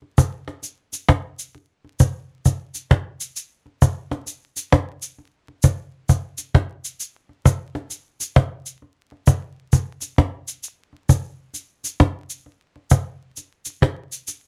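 A woody cajon with faint snares, played with soft hands and sitting up front, opens this meditative, hypnotic reggae groove at 66 BPM with swung sixteenths, joined almost at once by a low-set cabasa blended with maracas and group handclaps, all captured in a dry, close 1970s-style small-room sound with vinyl crackle in a brief cut from a longer piece.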